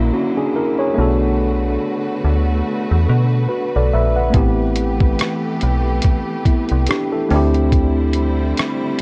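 A metallic, fast-attack FM bass sits up front in this hazy, nostalgic lo-fi hip hop clip at 71 BPM with a swung 16th feel, alongside a worn, slightly out-of-tune, lightly overdriven tine electric piano and a lush, bowed string section with vibrato holding sustained chords from F#7b13 through Bm7, Am9 and D9sus4, while a muffled, pitched-down sampler drum kit with a thumpy kick, hi-hat and rim click enters at 4.3 seconds, all in a dry mix with warbling old-tape pitch drift.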